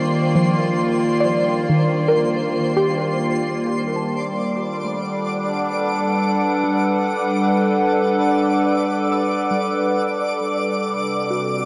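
A morphing, warbling wavetable pad holds sustained chords up front in this serene ambient excerpt, joined from the start by soft, round pluck arpeggios with chorus and tape echo, a sparkling granular shimmer and a very quiet, nasal bowed-like drone that stops at 3.8 seconds; from 3.7 seconds the pluck fades in and a filter sweep moves across the pad as Ebmaj7 gives way to Gmaj7 and then Csus2 at 10.9 seconds, in a dreamy mix soaked in lush hall reverb.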